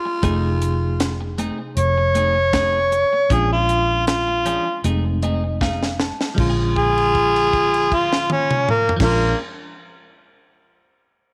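An overdriven, gritty harmonica carries the melody up front from 1.8 seconds, with tongue slaps, scooped notes and light vibrato, in this rollicking, swaggering straight-eighth soul blues excerpt at 78 BPM with a light 16th-note swing over F7#9 and Bb7#9 chords. A growling, breathy tenor saxophone plays a second line at the start and returns at 6.4 seconds, while a reedy, worn, slightly out-of-tune electric piano with fast tremolo sits in the background, a twangy clean guitar adds compressed stabs, and a dark, foam-muted fingered bass joins a tight funk kit with bright cymbals and a high-tuned snare. The electric piano and then the drums play fills leading into the second section, where a held note sustains, and the recording sits in a small room with light reverb.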